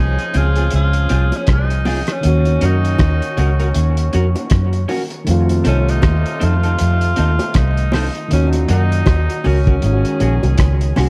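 This sweet, tender lovers rock reggae excerpt opens at 0.0 seconds with a bright tenor saxophone singing the melody in scooped notes with tape echo, a clear horn section with light vibrato playing a second line, a dark FM electric piano sitting in the background with dub echo, and a round, foam-muted fingered electric bass placed up front. A cloth-damped, thuddy drum kit arrives at 0.2 seconds with a tight kick, hi-hat and rim click, muffled and gritty with a rolled-off top. At 0.3 seconds an electric guitar through a small old amp adds slightly broken-up, picked stabs with dub echo, and very quiet, low-tuned bongos join the groove. The tempo is a relaxed 79 BPM in 4/4 with a gentle sixteenth-note swing, moving through Dbmaj7, Ebm7, F7 and back to Ebm7 before resting on Ab7sus4. The small room ambience and dark, warm production give the sound a soft, vintage glow.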